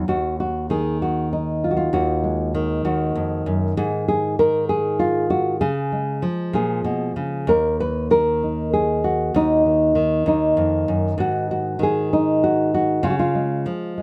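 Light reverb surrounds a full-bodied, up-front nylon-string guitar in this reflective, haunting solo fingerstyle folk passage, cut from a longer piece. Thumb-plucked with a classical touch, the guitar moves at a slow 65 BPM in a straight 6/8 in E-flat minor. It cycles twice through E-flat minor, A-flat power chord and D-flat, returning to E-flat minor at 7.5 seconds.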